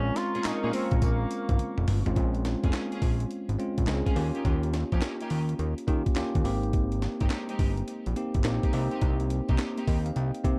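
A fat, saturated analog bass sits up front in this punchy, confident new jack swing groove, its detuned sawtooth and square-wave tone plucking through a filter with a fast attack and then sustaining. Beside it, a gritty, compressed, pitched-up breakbeat kit hits with a thumpy kick, high-tuned snare, hi-hat, handclaps, tambourine and toms, all riding a swung sixteenth-note feel and leading into a drum fill at 1.6 seconds. A bright, bell-like tine electric piano plays clean, direct accompaniment throughout, while a lush, bowed studio string section adds focused, smooth-topped stabs with vibrato and delay. The piece opens with a mellow, breathy tenor saxophone melody, vintage and intimate in jazz style, over an evolving, chorused sawtooth pad that swells slowly in the background; the saxophone drops out at about 1.9 seconds and the pad at about 2.1 seconds. The harmony moves from Bbm7 through Eb7 and Abmaj7 to Cm7, and the electric piano closes the excerpt with a fill at 9.6 seconds, all in a dark, dry production.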